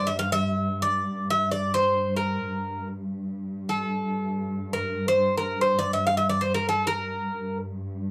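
This is a short Turkish makam ensemble excerpt in free time, centred on G in makam huseyni and tuned to A4 = 438 Hz, with a soulful, hypnotic mood. A Greek bouzouki carries the melody up front, its bright, metallic double strings picked between A4-30c and F5, with some strings doubled at the octave. Beneath it, a muted symphonic cello section holds a drone on G2, its bowed, con sordino tone dark and veiled yet lush with vibrato. Both parts begin together at the start, and the bouzouki stops at 7.6 seconds while the cello drone sustains to the end at 8.1 seconds. The sound is dry and close, in the manner of a 1970s studio recording, with little reverb, so both instruments sit intimately near the listener.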